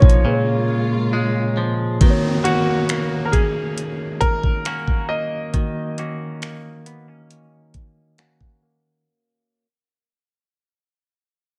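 Light digital reverb frames this late-night, longing contemporary R&B fragment, cut from a longer piece, where a clear grand piano carries the melody over mellow tine electric piano chords, a chorus-lush, twangy clean guitar picking arpeggios, dark bowed strings that hold only until 2.0 s, and an up-front drum kit of finger snaps, metallic hats and a knocking kick roughened by 12-bit sampler grit, as a downlifter enters at 2.0 s and a filter sweep and fade-out move the Bbm7 to Ebm7 change toward its close.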